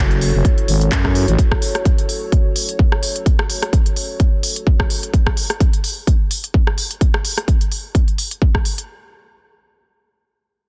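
A dense, dry, heavily limited mix carries this gritty, bouncy bass house fragment at 128 BPM in F# minor with swung sixteenths: a punchy electronic kick and a crisp house kit of handclaps, hi-hat and rim click sit up front, while a thick, growling FM bass with tube saturation and sidechain pumping holds F#m until 1.4 seconds. A faint, lo-fi, warbling tape-like pad with phaser drifts alongside that bass, and a moody, detuned analog pad with chorus and pumping sustains chords until 5.1 seconds.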